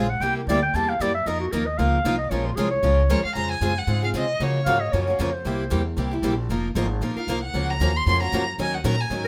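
A fast 230 BPM swing in 4/4, with a light 55% lilt on the eighth notes, drives this bittersweet passage of acoustic string jazz in the manouche style, cut from a longer piece and tuned slightly low to A4 = 439 Hz. An upright bass sits up front with a woody, thumpy pizzicato from gut strings, while two picked steel-string acoustic guitars supply accompaniment: one bright, with audible finger squeak, the other tucked in the background with the crisp ring of fresh strings. A warm clarinet opens with a solo in a vintage jazz manner, its subtone and soft attack shaded by vibrato. At 3.1 seconds a single bowed violin takes the melody with a rich, expressive voice full of vibrato and portamento. The harmony moves through chords such as C7, F7sus4, Bbm9 and Dbmaj7, all set in a moderate studio reverb.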